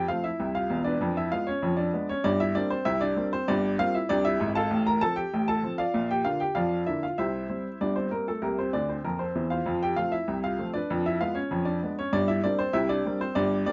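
Ragtime piano in a lively, jaunty straight 2/4, with a clear, woody upright piano playing solo up front, its audible action noise and long sustain heard through light reverb in a dark production, moving from F through a diminished chord to C7 and back, with a brief fill at 8.7 seconds in this short cut from a longer piece.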